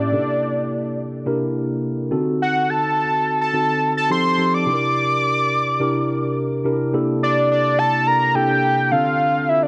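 Pop with a nocturnal, slick mood, cut from a longer piece, where a fat analog lead built from detuned sawtooth and square waves with a sub octave carries the melody through an evolving filter sweep, vibrato and chorus over a mellow, clean tine electric piano that sounds as if heard through built-in speakers, both up front in a lush hall reverb as the chords move from C13 at 0.1 seconds to a new section at 6.9 seconds ending on Dm7.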